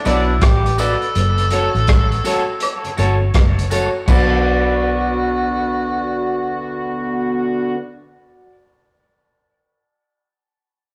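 A round, foam-muted electric bass sits up front in this hypnotic, laid-back roots reggae excerpt in B minor at 82 BPM, moving from Bm to F#m with a swung sixteenth feel, beside a gritty, saturated breakbeat kit with a punchy kick and dark cymbals that stops at 4.3 s along with the faint tambourine and woodblock. A distant, roomy tenor saxophone carries the melody over a smooth horn section, while a twangy, slightly broken-up electric guitar carrying spring reverb and dub echo, a brilliant grand piano playing stabs, and a flute-like tonewheel organ turning through a slow rotary speaker fill the accompaniment. The whole has the rough, saturated feel of a rehearsal room with a moderate stone-room reverb.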